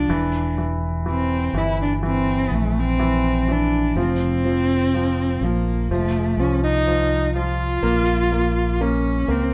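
Heartbroken and longing, this fragment of a pop ballad puts a single bowed cello up front, close and focused with vibrato, over a clear, intimate baby grand piano accompaniment whose action noise is audible and a round, direct fingered electric bass, all three playing live in one room with a moderate large-studio reverb as the harmony moves from Em7b5 through Fsus4 and F5 to Bbm.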